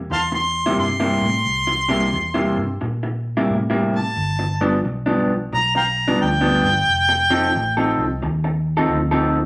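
Laid-back and gritty, this short blues excerpt swings easily in 4/4 as a clear, close-miked harmonica takes the solo in a jazz style, its light vibrato, tongue slaps and scooped notes sitting up front until 8.2 seconds. Beneath it, an electric guitar through a small old amp plays a dark, slightly broken-up, compressed picked riff, while a vintage foam-muted fingered bass adds a round, punchy low end. The chords move from C7 to G7 at 4.2 seconds and F7 at 6.9 seconds, all set in a moderate large studio reverb.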